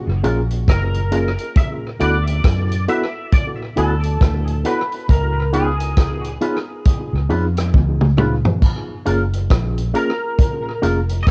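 Smooth and tender, this lovers rock reggae excerpt sways with a gentle swing over chords that move from F#maj7 through D6 and C#7 before returning to F#maj7. A twangy, fingered electric guitar carries the melody, its clean, compressed tone thickened by ensemble chorus and tape echo and colored by cassette tape. Beneath it, a dark, round, foam-muted bass sits up front, while a mellow tine electric piano plays accompaniment through its built-in speakers with its own tape echo. A second electric guitar adds picked stabs through an envelope filter, its scooped tone touched with subtle chorus. The vintage drum kit, natural and punchy in the kick with a rolled-off top, brings hi-hat, rim click, splash cymbal and toms, with a fill from 7.7 to 8.6 seconds, and the piece has the light reverb of a home cassette recording.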